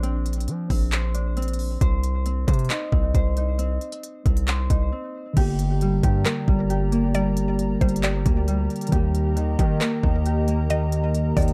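A half-time trap groove drives this melancholic, menacing hip hop piece, with an overdriven drum kit of knocking kick, crisp hi-hats, handclaps and crash cymbal up front beside a heavy, saturated 808-style bass. A mellow, ringing Celtic harp plays fingerpicked arpeggios with digital delay from the start. Toward the end of a short break beginning at 4.9 seconds, a clean tine electric piano with lush chorus joins in the background, followed by a deep, detuned analog pad holding sustained chords and a woody, round mallet-like synth pluck carrying a second line, all in a dark, dry production.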